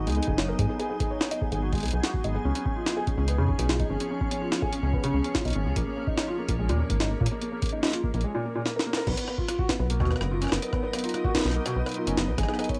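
IDM in an intricate, cerebral mood, where a rubbery, hollow square bass sits up front beside gritty, pitched-up jungle sampler-style drums and a deep analog kick, while a felt-muted upright piano with audible action noise spins soft arpeggios through cassette tape and analog delay alongside an icy, crystalline glass pad of sustained chords that pumps with sidechain and carries 12-bit sampler grit, all moving from Abm7 through Db7 and Bbm7 until a drum fill and band accent near 8.9 seconds open onto Bmaj7 at 9.1 seconds in this home cassette recording.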